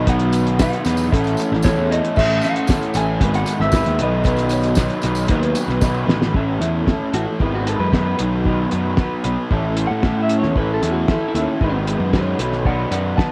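A cloth-damped, thuddy drum kit sits up front with a fat snare, tight kick and dark cymbals, driving this jangly, upbeat indie rock excerpt in A lydian at 114 BPM. A fuzzy, overdriven picked bass is also prominent, while two slightly broken-up guitars through a small old amp carry a compressed, echoing melody and a chorused, lo-fi riff. An overdriven guitar adds another riff in the background, and a bright, jingly tambourine plays from the start until about 6 seconds. A worn, slightly out-of-tune tine electric piano briefly joins around 4.5 seconds. A drum fill at 5.8 seconds leads into a clean guitar solo from 6.3 seconds, all with the hazy feel of a home cassette recording.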